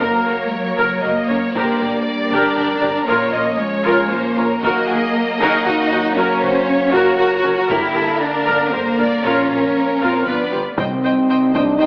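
Heard through an AM-radio filter with moderate stage reverb, this dark, epic cinematic orchestral excerpt in 3/4 at 117 BPM sets a soft-attack violin melody and a distant, dark second violin line over even viola accompaniment, sustained French horn chords, an up-front woody cello bass and a focused double bass, with a vintage, band-limited taiko ensemble entering at 1.6 seconds and trombones and very quiet hard-mallet timpani arriving at 10.8 seconds as the chords move from Gb through Gm and Bbm to a G7 resolving on Cm.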